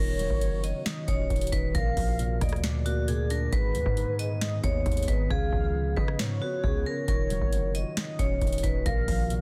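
A bright, ringing vibraphone struck with hard mallets carries the melody from the very start of this eerie, hard-hitting trap clip, shadowed by a velvety synth lead with chorus and digital delay that traces a second line alongside it. Beneath them, a felt-muted upright piano plays dark, intimate accompaniment with audible action noise, while a very quiet, ethereal pad holds airy sustained chords. A punchy, saturated 808-style bass anchors the low end, and a booming analog drum machine enters at 0.2 seconds, sitting up front with a deep kick, crisp snare, rim click and metallic hi-hats. The groove moves at 135 BPM in a half-time feel in Eb minor, cycling through Ebm7, Bb7, Abm and Db7. The hi-hats drop out between 5.3 and 7.1 seconds before returning. Digital ambience surrounds the parts, and the dense, heavily limited master keeps the mix loud and heavy.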